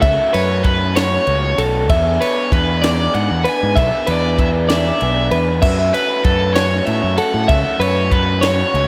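Math rock and midwest emo in a straight 6/8 at 64 BPM, bright and intricate, this short cut sets a bright overdriven guitar melody over warm, clean, compressed twelve-string arpeggios with slapback and analog delay, a lo-fi, double-tracked garage guitar riff, a growling overdriven fingered bass sitting up front, and a crisp, polished fusion kit with a high-tuned snare and punchy kick, moving from F#m7 to E7 at 1.9 seconds and back to F#m7 at 5.6 seconds inside a lush hall reverb that gives it a big arena sound.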